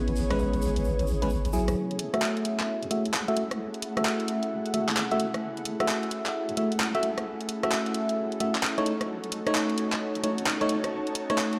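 A glassy FM electric piano sits up front, its bell-like stabs decaying through chorus, a low-pass filter and digital delay, with a filter sweep running across the whole cut. This is late-night, bouncy two-step UK garage at 131 BPM in 4/4, swung on the sixteenths and set in F# dorian, taken from a longer piece. Beneath the stabs, an overdriven, layered electronic garage kit of handclaps, hi-hat and rim click in a small room drives things forward, while a grainy, distant tube shaker adds bright texture until 1.7 seconds. A deep, soft wobble bass with a detuned sine-and-triangle tone holds down the low end, compressed and high-pass filtered. Two background pads fill out the space: a smooth sawtooth analog pad sustaining chords, and an ethereal, airy unison pad with a slow attack and long release. The harmony moves from Amaj9 to F#m7 at 1.8 seconds, where a build-up begins, then to B9 at 8.9 seconds, all within a dark, lush hall ambience.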